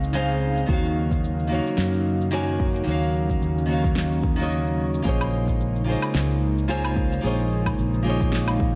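Sunset chillout with a warm, blissful glow and a gentle swing on the sixteenths. An up-front, fingerpicked nylon-string guitar carries the accompaniment with a full-bodied classical tone, fresh strings and an audible finger squeak, trailed by delay and shimmer reverb. Behind it, an airy, breathy pad holds soft, slow-attack chords with a detuned, chorused sheen and a noise layer. A growly, amped fretless electric bass sits underneath with analog chorus, while a tape-warm kit of electronic cabasa, fat snare and woodblock runs through the passage, joined at 0.7 s by a deep, layered electronic kick. The harmony moves from Dbmaj9 to Ebm9 and settles on Bbm11 at 5.1 s, all framed by a dark production and a moderate concert-hall reverb in this short excerpt cut from a longer piece.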